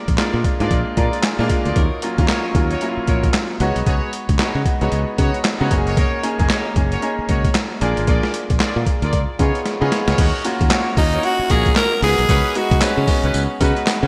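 A clear, polished baby grand piano opens this slick, bouncy new jack swing excerpt, slipping in a short fill as the band settles into a swung groove in four. A punchy, growly fingered electric bass with a bright, direct tone holds the low end, while a sampler-style boom bap kit sits up front with a thumpy kick, a high-tuned snare, handclaps, hi-hat, tambourine and crash. The kit sounds compressed, pitched down and gritty, with a tape-warm, gated-reverb character. A distant, roomy horn section adds soft-attack, jazz-style stabs with light vibrato and a touch of digital delay, moving through minor seventh, suspended and sixth chords. After a drum fill at 9.7 seconds the music turns to a new section at 10.2 seconds, and at 11.0 seconds an edgy, raspy tenor saxophone enters close-miked and up front, carrying a short growling pop-style melody. The whole mix has a bright 1980s-style digital sheen, set in a lush hall reverb.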